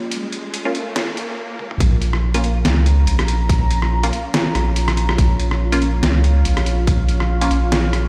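Opening on a dark, detuned ambient pad with chorus, muted dub chord stabs with phaser and dub echo, an electronic riser and swell, and a muffled, pitched-down, overdriven sampler-style trip hop kit of hi-hat, rim click, snare and toms, this cavernous, meditative deep dubstep excerpt in Bb minor at 142 BPM, half-time with swung 16ths, builds through filter sweeps and a drum fill before dropping at 1.8 seconds into a thick, saturated triangle sub bass up front and a tight, tape-warm electronic kick, set in a big bare-room reverb.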